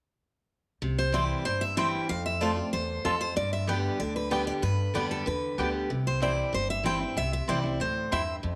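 A bright, full-bodied dreadnought guitar picks the accompaniment and a thumpy, gut-strung upright bass plucks beneath it from 0.8 s, setting up a lively, virtuosic bluegrass passage at 189 BPM in C major that moves through C, F and G before returning to C. A second picked steel-string guitar takes the up-front melody at 1.0 s, warm with audible finger squeak, while a mellow, woody mandolin adds double-string stabs coloured by slapback echo. A moderate echo-chamber reverb and small-room ambience surround this brief cut from a longer piece.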